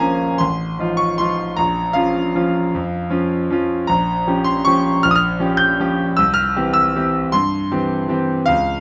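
A bright grand piano plays alone from 0.0 to 8.8 seconds in this short classical waltz, cut from a longer piece. The mood is elegant and nostalgic, in 3/4 at 156 BPM, with uneven beats and a rubato feel. Sitting up front, the piano has a brilliant, vintage tone with long sustain, and it spans a range from A1 to G6. The harmony moves from F7/A through Bbm and Gm7b5/Bb before reaching C at 6.2 seconds. Light reverb surrounds the instrument, and the tuning rests at A4 = 439 Hz.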